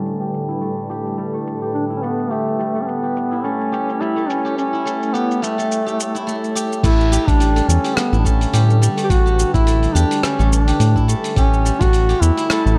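A filter sweep shapes the opening of this peaceful, earthy organic downtempo excerpt, where an ethereal, airy pad with chorus, its own reverb and sidechain pumping sits beside silvery, ringing steel-string zither arpeggios picked with fingerpicks and carrying delay, and a dusty, gritty, tape-warm sampler-style soul kit of hi-hat, rim click, shaker and crash joins; a close-miked duduk enters up front at 1.7 seconds with a scooped, vibrato-rich folk melody, and at 6.8 seconds a round, deep analog bass with sidechain pumping and a thumpy electronic kick arrive, all within a dark echo chamber and a gently swung feel.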